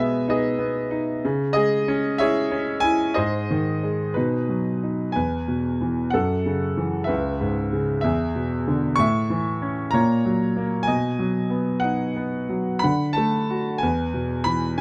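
Heard up front in a clear, open sound with light reverb, this lyrical classical excerpt for solo concert grand piano unfolds in a rubato 6/8 with a melancholic, wistful mood, its deep bass reaching down to C#2 as the music shifts from minor-key harmony into a brighter major passage at 5.2 seconds, touching a D chord at 12.8 seconds before settling on E at 13.8 seconds.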